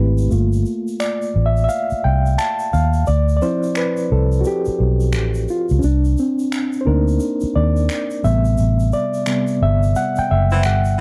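A dry, close 1970s-style studio sound frames this soulful, sultry neo-soul R&B groove at 87 BPM with a swung 16th feel in G dorian, where a mellow, reedy electric piano with medium tremolo plays up front and takes the lead from 0.3 seconds over Gm9, Dm9, Cm9 and Am9 chords, a dark, round, punchy foam-muted electric bass sits beside it, distant egg shaker and finger snaps tick along, and a clear saxophone section lands a brief stab at 10.5 seconds during a band accent near the end of this cut from a longer piece.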